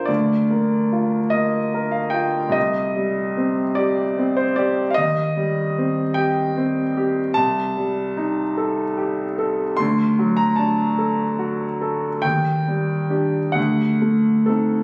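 Swaying in a rubato 6/8 at about 49 dotted-quarter beats per minute, with gently uneven pulses, this tender, nostalgic romantic nocturne is a 14.8-second fragment of a longer piece. A solo concert grand tuned to A4 = 439 Hz sits up front, its warm, smooth, vintage tone and deep bass spanning C2 to C6 with long sustain as the harmony drifts from Bb/D through Cm and Am7b5/C toward Ebmaj7 and a closing D7b9. Captured on a phone in the room, the piano blooms into a wet recital-hall reverb that gives the sound an intimate, lived-in air.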